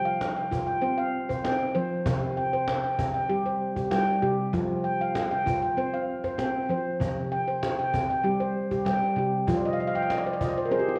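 Heard through worn, warbling cassette tape with a gentle pitch drift and a wet echo-chamber reverb, this short excerpt from a longer piece has a hazy, dreamlike sheen. It is meditative world music built around tuned percussion, with a straight, unhurried pulse in four and a hypnotic calm. A nitrided-steel handpan carries the music in ringing, mellow arpeggios played with soft fingertips, sitting up front and mid-forward across a broad span from low to high. Behind it, a snappy acoustic cajon with snares keeps time from a distance, as if placed in a large room. The harmony rocks steadily between F5 and C5, and the handpan closes the passage with a fill from 9.6 seconds to 11.0 seconds.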